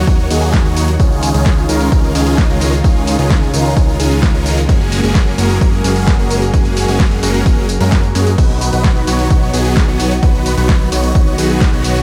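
This uplifting, triumphant festival progressive house excerpt opens at once with a lush, warbling pad holding sustained chords in the background, a huge, euphoric supersaw lead playing a riff, and an analog bass line. The pad is a vintage, full-bodied blend of detuned sawtooth and square waves, with a slow attack, long release and chorus, and it pumps against the sidechain. The bright, compressed lead carries a moving notch, phaser and tape echo, also pumping, while the thick sawtooth bass sweeps its filter underneath. From 0.1 s a punchy electronic kick sits up front, re-recorded in a small room, and a pop drum kit adds a fat snare, hi-hat, tambourine and crash cymbal, both with studio reverb. The harmony moves from D#m through C#add9 and F#add9 to B under a light overall reverb, and the kick drops out at 11.7 s.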